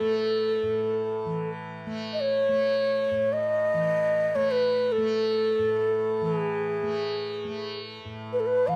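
The recording sounds close and detailed, with light reverb giving the instruments a gentle sense of space. This is a brief excerpt of Hindustani classical music in free time, set in raga Yaman on A with tuning at A4 = 438 Hz, and its mood is radiant and serene. A bamboo bansuri carries the melody up front from G#4 to F#5, its breathy, mellow straight tone shaped by soft attacks and rolled-off highs. Beneath it, a tanpura sustains a softly plucked drone between A2 and A3, set well back, its buzzing, shimmering strings adding a bright acoustic glow. Both parts sound together for the full 8.8 seconds of this fragment, cut from a longer piece.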